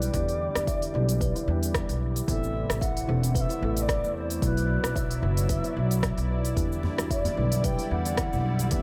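An echo-heavy, small-room mix carries this hypnotic organic downtempo excerpt in E minor at 112 BPM with a lightly swung 16th feel, where an airy, distant low ney sings the melody through analog delay over a felt-muted upright piano with dub echo, a detuned sawtooth analog pad with chorus, a woody, up-front pizzicato upright bass with tube saturation, all three of these pumping to the sidechain, while a hollow-toned kalimba rings out arpeggios, an afro-pop kit adds cabasa, smooth hi-hat and rim click beside a deep electronic kick, and a very quiet djembe with metal rattles joins at 6.8 seconds as the chords move from Em7 through Amadd9 and Bsus4 back to Em7.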